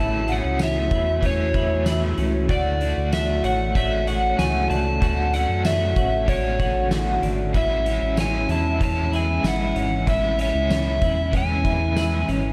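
A dark, overdriven slide guitar carries the melody through this blissful, ethereal dream pop excerpt, its lines trailing digital delay over a crunchy rhythm guitar shimmering with tremolo and subtle chorus, a semi-hollow electric guitar picking clean, hollow-bodied arpeggios, and airy, glassy glass harmonica chords that beat gently against one another. A round, deep analog bass sits up front beneath an oversized, low-tuned drum kit with a fat snare, punchy kick, gritty saturation and tambourine, which enters at 0.3 seconds in a bright stone room. A very quiet, bell-like celesta, slightly out of tune, adds delicate sparkle until 10.8 seconds, all floating on light reverb as the harmony moves from Amaj7 to Dmaj7 and back.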